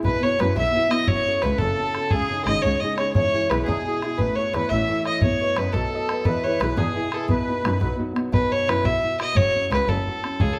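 An up-front bowed fiddle with an earthy, smooth-topped tone and light vibrato carries the melody of this lively, cheerful Celtic jig in 6/8 at 116 BPM in B mixolydian, joined from the start by a reedy, sweet accordion second line with light tremolo tuning that drops out at 8.0 s, a ringing, thumb-plucked Celtic harp, a soft-attack bowed double bass played sul tasto with an airy, intimate tone, and a tight, damped, close bodhran, heard as a band playing live in one room with moderate large studio reverb.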